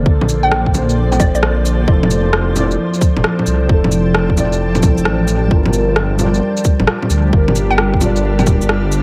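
Future garage at 132 BPM in G dorian, melancholic and ghostly, with a 66% swing on the sixteenths and a Bbmaj7, Fmaj7, Gm7 progression. Muted, felt-like synth keys with chorus, phaser, tape echo and 12-bit grit sit over a blurred granular cloud pad and a menacing detuned saw bass that swells through its filter, all three carrying sidechain pumping alongside a tight, up-front electronic kick, while electronic bongos, cabasa, shaker and rim click fill out the groove. A hollow, bouncy square pluck with lush chorus and tape echo appears briefly at 0.4 seconds and again at 7.7 seconds, all within an echo-heavy mix, a moderate spring reverb and a bed of vinyl crackle in this short cut from a longer piece.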